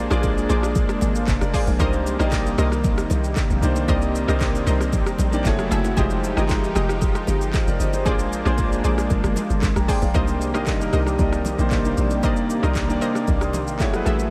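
Hypnotic and soulful, this amapiano groove is built on a hollow, bouncy log drum bass and an up-front electronic afro-pop kit of deep kick, smooth hi-hats, handclaps, rim clicks and shaker, while an intimate concert grand piano with audible action noise provides the accompaniment, adds a brief fill at 5.2 seconds, and sits over a lush, detuned sawtooth pad, a warbling vintage pluck with analog delay, and very quiet, dry bongos and congas, all steeped in a dreamy ambient reverb.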